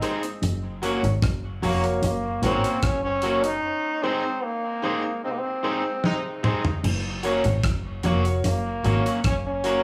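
Roots reggae with a sunny, uplifting mood, this short cut from a longer piece moves in a straight, unhurried four. A brilliant, punchy trombone carries the melody with light vibrato, sounding forceful yet a little distant and roomy, its line trailed by tape echo. Beneath it, a slightly broken-up, twangy electric guitar plays accompaniment through the same echo, while a woody upright piano adds polished stabs with long sustain, and a very quiet, compressed clean guitar picks out a low riff. A round, foam-muted fingered bass lays down a dark dub foundation, and a dry 70s drum kit with a tight kick uses crash, hi-hat, rim click and toms. The band hits an accent from 3.6 s, a smooth, tight horn section slips in a brief second line with tape echo at 5.2 s, and a drum fill arrives at 6.0 s, all inside a moderate studio ambience.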